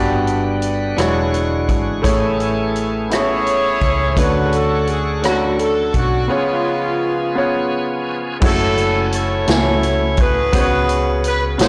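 Fervent and solemn, this slow gospel fragment in 6/8 at 56 BPM in F# minor sets a clear, up-front concert grand piano, a dark, round hollow-body electric bass and a big-room drum kit with a punchy kick under a bright tonewheel organ, lightly overdriven through a slow rotary speaker, that holds sustained chords until 8.4 s, while from 3.1 s a breathy alto saxophone with vibrato and scooped notes sits in the background beside a soft-attack saxophone section carrying the melody, heard through an echo-chamber reverb in a blown-out, overdriven recording.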